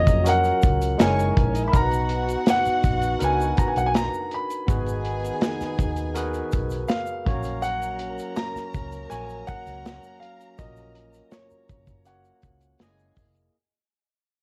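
Lush and romantic, this 1970s-style soul passage at 81 BPM in F# major sets a grand piano melody, intimate with audible action noise and long sustain, over a gritty, overdriven tine electric piano, round foam-muted fingered bass, and a dark, smooth drum kit with a tight kick and snare. A sul tasto chamber violin section carries a soft-attack second line, a clear jazz-style trombone section adds stabs, and a grainy egg shaker sits in the background, with cassette tape coloring the violins, electric piano, trombones and drums. The home-recorded sound, wrapped in studio reverb, fades out across its 13.5 seconds as chords move from F#maj7 through Bmaj7 and G#m9.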